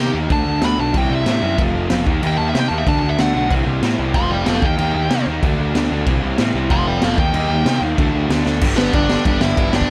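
Energetic and rebellious, this punk rock excerpt drives in a straight 4/4 but sits in a half-time feel for most of its length. A dark, overdriven lead guitar carries a solo up front from the start, riding over a repeating cycle of D, C, F and E-flat chords that finally breaks to G at 8.6 seconds. Beneath it, a bright distorted electric guitar and a lo-fi, overdriven garage guitar play riffs in the background, while a fuzzy, punchy picked bass anchors the low end. The acoustic drum kit, saturated and gritty with a high-tuned snare and a rolled-off top, enters at 0.3 seconds with kick, snare, ride and crash, and a drum fill at 8.5 seconds launches the closing section. A small room reverb gives the whole band a close, garage-like space.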